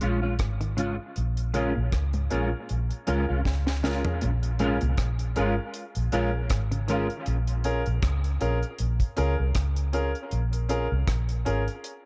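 A hypnotic, meditative dub reggae excerpt opens on a break with a dry, up-front drum kit of tight kick, high-tuned snare, rim click, hi-hat and toms, a round, foam-muted vintage electric bass and a dark, clean electric guitar washed in chorus and dub echo. A compressed semi-hollow guitar adds arpeggios in the background at 0.6 seconds, a clear concert grand piano with long sustain punctuates the dark, warm, small-room mix with echoing stabs from 1.5 seconds, and a drum fill arrives at 3.5 seconds.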